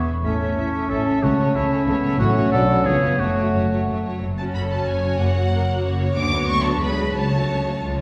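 The recording sits back in a reverberant scoring stage, its strings bathed in a generous wet tail. This is a stormy, dramatic fast romantic movement in triple time for symphony orchestra, cut from a longer piece. The first violins carry the melody, vibrato-laden and expressive as it ranges up to D6, while a second violin section adds a smooth, even line in the background and the violas supply rich, lush accompaniment. Beneath them the cello section, bright and focused, joins the double basses on the bass line, and a concert harp rings out thumb-plucked arpeggios throughout. For the first four seconds a solo clarinet, a hollow flute section and a solo oboe with light vibrato weave second lines over mellow French horn chords, and hard-mallet timpani sound an articulate C#3 at 1.2 seconds. After those winds and horns fall away near 4.0 seconds, the strings and harp press on through a darker turn toward a G#m7b5/D chord before settling on F#m/C#.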